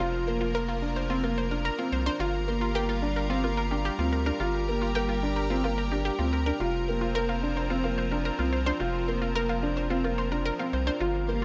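A dark, woody upright piano carries a mellow riff through this hypnotic, moving excerpt of piano and strings electronica at 109 BPM, its tone touched with delay. Beneath it, a round analog bass sits deep and up front, while a lush, detuned unison pad holds thick sustained chords with chorus and a bright sawtooth pluck spins arpeggios through chorus and delay. The harmony moves from Fsus4 to Gm7 at 2.2 seconds and back at 6.6 seconds, all set in a moderate recital hall reverb.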